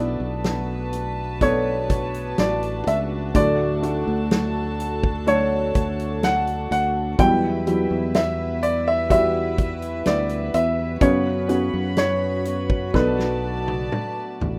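A clear, polished baby grand piano carries the melody in this heartbroken, longing pop ballad excerpt, set over a mellow felt-muted upright piano with audible action noise, a distant, floating string section holding sustained chords, very quiet fingerpicked arpeggios on a full-bodied jumbo acoustic guitar, a round, dark fingered electric bass, and a punchy, up-front country drum kit that enters at 0.4 seconds and plays a fill from 12.9 seconds, captured in a rough home demo mix with light studio reverb.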